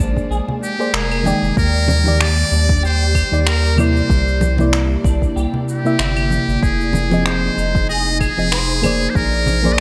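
Wistful and warm, this short excerpt of sunset chillout moves at 95 BPM in F dorian with a gentle 16th-note swing, its chords drifting from Bb9 through Ebmaj7, C9 and Fm7 under a brilliant, buzzy trumpet with a metal mute that carries the melody up front from 0.6 seconds, touched with digital delay. A mellow, warbling FM electric piano and an ethereal pad with slow attack and long release fill the harmony, while a clean semi-hollow guitar plays arpeggios in the background through chorus and delay until 8.8 seconds, over a round, dark analog bass. Overdriven electronic kick, shaker, finger snaps and claves, re-recorded in a large room, are soon joined by close, dry congas to give the bright 1980s-style digital production its pulse.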